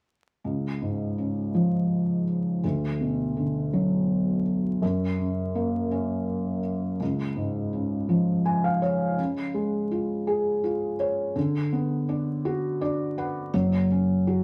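A felt-muted upright piano sits up front, intimate and mellow with audible action noise, carrying this tender, heartfelt six-eight pop ballad at 55 BPM through chords such as C#, Bm/D and F#, with fills at 8.1 s and 12.5 s. A woody, round fretless electric bass arrives only at 13.5 s on a low F#. Moderate studio reverb and a layer of vinyl crackle frame this short passage cut from a longer piece.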